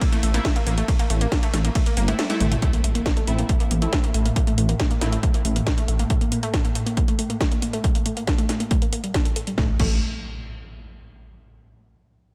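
This dark, driving peak-time techno excerpt at 138 BPM opens mid-drop on an A minor chord: a punchy, up-front electronic kick and a layered techno kit with a cracking snare, metallic hats, crash, ride and toms, both re-recorded in a small room, alongside a lush, warbling unison pluck riff with tube saturation, sidechain pumping and delay. A deep, rumbling detuned saw bass, saturated and beating, pushes up front with its own pumping, while a thick, aggressive rave stab with a moving notch, tape grit, chorus and diffuse ambient delay joins in. At 2.2 seconds the kick drops out for a brief drum fill, and at 2.6 seconds a very quiet electronic impact lands, the harmony falls away, and a filter sweep runs until 9.6 seconds. A swarming, tense drone on A enters in the background at 4.1 seconds, evolving and granular with ring modulation, ensemble chorus and reverb, and the bass stops at 6.0 seconds before returning briefly near the end alongside a second faint impact. 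The whole mix is set in light digital ambience in A phrygian.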